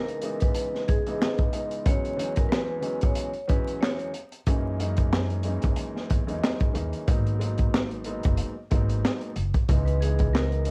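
Tough and moody, this boom-bap hip-hop excerpt sits at 92 BPM in G# minor with a lazy 16th-note swing. A dark, boxy concert grand piano carries the accompaniment throughout, moving through C#m7, E6, F#13 and G#m7 with a mellow, deep low end and a worn cassette character. Crunchy breakbeat drums sit up front, with a punchy kick, a high-tuned snare, hi-hat and handclaps, all rolled-off on top and smooth in a small room. The vibraphone plays a metallic, ringing melody with a fast motor vibrato until 4.1 seconds, and the upright bass enters at 4.5 seconds with woody pizzicato lines on steel strings. The vibraphone returns briefly at 9.9 seconds, while the dry mix carries a homemade cassette feel and vinyl crackle.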